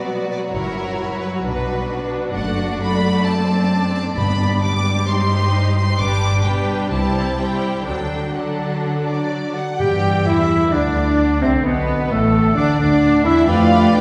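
Classical romantic orchestral music in G major at 131 BPM, urgent and dramatic, in which lush, vibrato-laden violins carry the melody above a softly attacked second violin line, focused violas, rich cellos and double basses, round soft-mallet timpani strokes at 4.2 s and 9.8 s, dark French horns holding sustained chords in the background from 9.1 s, and a punchy oboe, airy flutes, a very quiet clarinet and a warm bassoon joining at 9.8 s, the orchestra heard from further back in a wet scoring-stage reverb.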